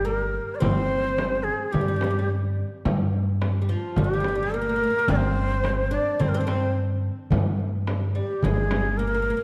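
A breathy, end-blown ney leads this melancholic excerpt of an Arabic maqam ensemble in G maqam kurd, carrying a longing melody with soft-attacked vibrato that sounds up front yet slightly distant and unsteady. Alongside it from the start, a plectrum-plucked fretless oud with double strings traces a woody second line, while a pizzicato upright bass on steel strings anchors the low end up front. A small, high clay-shell darbuka with natural skin joins at 0.3 seconds, played with soft hands, its compressed, saturated sound kept in the background. A deep, large frame drum follows at 0.6 seconds, heard distantly as if in a large room. The piece moves at 107 BPM in a straight 4/4, and a moderate scoring-stage reverb gives the whole ensemble a spacious finish.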